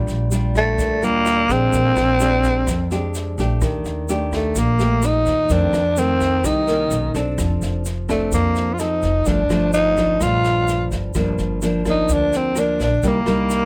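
Fingerpicked nylon-string guitar and a woody, pizzicato upright bass open this short excerpt of a wistful, intimate bossa nova in G minor at 127 BPM. At 0.1 seconds brushed jazz drums with a boomy kick and rim clicks join them, along with a grainy egg shaker that sits low in the mix. From 0.6 seconds a growling tenor saxophone carries the melody up front, breathy and raspy with subtone, vibrato and scooped notes, over rich chords such as Ebmaj7#11 and Bmaj9, and the close, dry recording catches every detail down to the finger squeak on the guitar strings.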